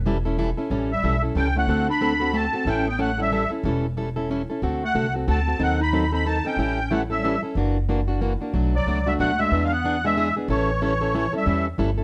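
A reedy musette accordion carries the melody up front from 0.9 s, its shimmering musette tuning set against a breathy, whispered clarinet second line that sits in the background with vibrato and scooped notes. Underneath, a woody, thumpy upright bass on gut strings and a full-bodied, picked steel-string acoustic guitar give this swinging, lively jazz manouche in waltz time its pulse through chords such as A7, D7 and Bm7. Light reverb and a dark production round out this cut from a longer piece.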